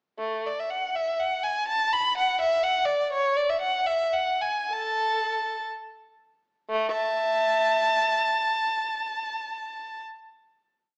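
A lone bowed violin, up front and sung with vibrato, carries this serene, radiant baroque-style suite movement in A major, mixing a melody that leaps to bass notes with double stops and spread chords. The 6/8 pulse moves freely between 56 and 85 BPM in dotted quarters, slowing from 2.4 seconds before settling on a final chord at 6.7 seconds. The even, silky tone sits in a wet recital hall reverb, heard through a small-speaker sound.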